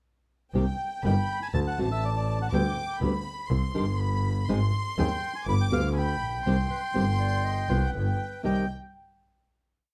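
Driven by the bowed double bass's tango rhythm of uneven groups of three and two eighths, this short, passionate and tense tango piece moves with a rubato feel, its clear, up-front bass sitting beneath fingerpicked nylon-string guitar in short classical chords with audible finger squeak. From 1.1 seconds a reedy, dark bandoneon carries a motif-based melody in period phrases, bathed in plate reverb, while a sul tasto studio violin section adds an intimate, soft-attacked counter-melody. From 6.5 seconds a clarinet in the background answers in the melody's rests before the ensemble arrives on a final chord at 8.4 seconds.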